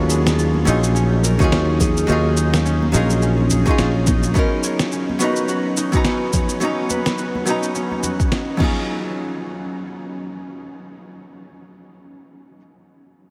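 A growly, round fretless electric bass sits up front for the opening 4.3 seconds of this relaxed sunset chillout piece in Eb minor at 106 BPM with a swung 16th feel, alongside a dark, clean hollow-body archtop guitar with delay and a bright, fingerpicked concert harp whose ringing arpeggios pass through a low-pass filter and delay. A gritty, sampler-style soul kit with a fat snare, cabasa and crash cymbal arrives, soon followed by very quiet, high-tuned, thin-skinned congas, and a deep, layered electronic kick drum enters at 1.4 seconds, with all the percussion stopping at 8.7 seconds. The chords move from Ebm11 to Bmaj9 and back, and the dreamy mix is soaked in a huge ambient reverb.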